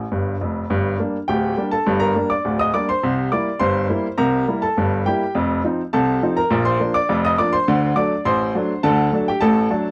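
A short upright piano fill opens this playful ragtime fragment, giving way at 0.7 seconds to the main section, which runs to the end at 9.9 seconds. The solo piano carries everything at a lively 103 BPM in a straight 2/4, its bright, woody tone spanning from a deep D1 up to Eb6. Sitting up front and intimate, the instrument lets its action noise come through clearly, adding a tactile, close-up character to the polished playing. The harmony moves from G minor through C7 and F7 to B-flat before turning toward D7. The dry, close sound recalls a 1970s studio recording, with little room reverb around the piano.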